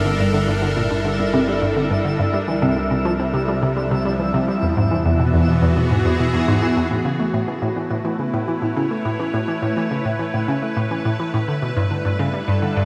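Cosmic and mysterious, this excerpt of sequencer-driven ambient space music sets a bouncy, hollow square pluck riff with phaser and analog delay up front over an evolving, morphing wavetable pad of sustained chords, a twinkling granular texture with octave-up shimmer, and a fat, saturated analog bass that drops out at 6.9 s as the harmony moves from Gm through E7 to A and G in a moderate plate reverb.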